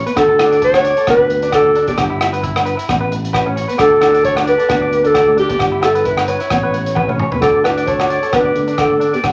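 A moderate large-studio reverb surrounds this carefree highlife guitar band excerpt at 132 BPM with a light 16th swing, where a breathy, vibrato-laden clarinet carries the melody up front over twangy, slightly broken-up electric guitar arpeggios, a punchy fingered electric bass, a small fingerpicked nylon-string guitar with finger squeak in the background, ringing vintage agogo bells and a gritty, saturated breakbeat drum kit whose fill at 7.0 s leads into a new section at 7.4 s over a D5, G6 and Aadd9 progression.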